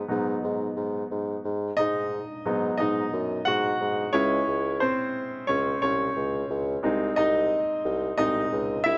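Piano-driven pop at 89 BPM in 4/4 with a straight feel, this dramatic, earnest 9-second excerpt from a longer piece pairs a brilliant, polished concert grand with a mellow bassoon carrying the bass line. The piano sits up front with deep bass, a present tone and short sustain. The bassoon plays in a classical style with light vibrato and a smooth top, while the harmony moves through G#m7, C#m and G#/B# under a moderate plate reverb.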